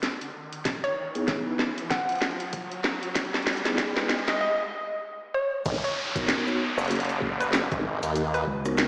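Playful and gritty, this short glitch hop clip swings its sixteenths in a 4/4 groove, moving from a build-up into a drop at 5.7 seconds. A layered electronic drum kit sits up front from the start, with a cracking snare, bright hats, rim clicks and crash, while an electronic riser climbs through the opening seconds before a brief break. A compressed, pitched-down sampler kick adds a thumpy, tape-tinged punch, and a woody, wave-folded pluck carries the melody with chorus and dub echo. A mellow tine electric piano plays clean stabs that pump against the sidechain and trail dub echoes, over a B6 chord that gives way to G#m9 at the drop. There a saturated formant-sweep wobble bass enters up front with chorus, joined by a grainy, very quiet cabasa, and a round, dark fingered electric bass appears only in the final moments. The whole mix is bathed in a lush hall reverb, with a thin, small-speaker colour, as if played on a big system in a bare room.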